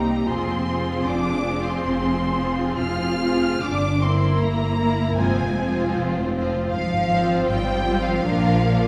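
Heard from further back on a scoring stage, this short slice of a slow romantic movement for string orchestra sits in a wet reverb with a 1.6-second tail. The mood is solemn and melancholic, moving at 62-80 BPM in 4/4 with a rubato feel. A focused, lush violin section carries the melody high above, while a second violin line sings beneath it with a soft attack, expressive portamento and a closer presence. Intense violas supply the accompaniment, and a rich cello section and the double basses, which sound smooth, even and up front, anchor the bass together, every section bowed with vibrato. Across the 8.9 seconds the harmony moves from Fm to Edim/G, back to Fm and Fm/Ab, and reaches Bb at the end.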